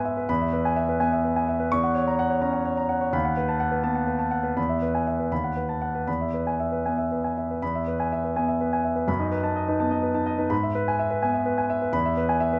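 A warm, natural, up-front concert grand piano plays alone throughout this sparkling, brilliant classical study in E major, moving in a flexible rubato 6/8 at 84 BPM from deep bass up to the upper registers through the harmonies of E, F#7/E, B7/D# and E/G#, all set in a moderate large studio reverb in this excerpt from a longer piece.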